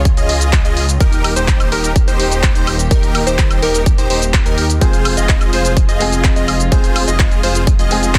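A punchy, overdriven electronic kick sits up front at 126 BPM in a straight 4/4, driving this anthemic, powerful slice of festival progressive house in F minor, with a layered big-room kit of handclaps, hi-hat, shaker and woodblock filling out the groove. Beneath it, a thick, detuned saw bass with chorus pumps against the kick, while a dark studio string section holds sustained chords in the background with a soft, bowed, intimate tone. A huge, bright supersaw riff and a catchy, plucky unison lead playing arpeggios both arrive at 0.2 seconds, each pumping and trailed by delay, the lead colored by a filter sweep and moving notch. At 4.8 seconds, as the harmony settles from Db and Eb onto F minor, a warm baby grand piano joins with short-sustain accompaniment, also pumping and delayed. The whole excerpt is dense and heavily limited, with only light reverb.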